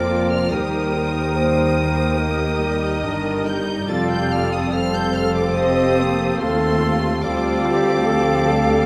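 Cinematic and sorrowful, this moving excerpt unfolds in a rubato 4/4 at 72 BPM, its high violin section carrying a smooth, vibrato-rich melody over chords moving from Gm7 through Eb and F7 to Dm7. A distant, intense second violin section, an airy silver flute, a classical-style solo oboe and a clear clarinet weave second lines, while a lush viola section supplies accompaniment and a roomy French horn section holds mellow sustained chords in the background. Cellos with a smooth top and woody double basses anchor the bass, all set in a moderate scoring-stage reverb.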